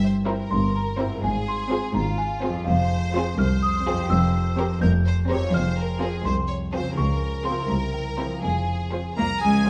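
A slightly out-of-tune, bell-like celesta with soft felt hammers shares the melody with a focused, close violin section in this magical, quirky cinematic piece in F minor at 83 BPM in a straight 6/8, over ringing fingerpicked harp arpeggios, smooth bowed double basses and rich cellos in the background, while a lush, distant second violin section and expressive violas join at 0.3 s, a clear classical oboe slips in at 9.2 s, and a stone-room reverb surrounds this fragment cut from a longer piece.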